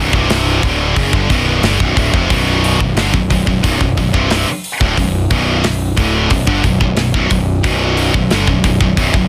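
Heavy metal with a heavy, aggressive mood, this short cut from a longer piece sits on a single B minor chord in a straight 4/4 pulse. Two distorted, high-gain electric guitars play the riff from the start, one bright and up front, the other with a scooped tone, both picked. A fuzz-soaked electric bass, overdriven yet round, anchors the bottom beneath them. A tight acoustic drum kit enters at 0.1 seconds with hi-hat, a medium-tuned snare and a tight kick, sounding mid-forward and close in a studio room. The sound is dry, with little reverb, and the master is dense and heavily limited in a modern style.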